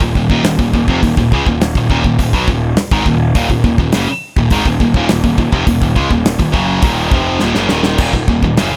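A heavy, relentless metal riff hits straight away on a bright, double-tracked high-gain guitar, with a growly, fuzz-driven picked bass underneath and an acoustic drum kit playing kick, snare, hi-hat and crash. The guitar sits up front alongside the tight kick and medium-tuned snare in a small-room ambience, while the overdriven bass adds grit below. A drum fill at 7.4 s closes this short cut from a longer piece, which stays on a single minor chord throughout.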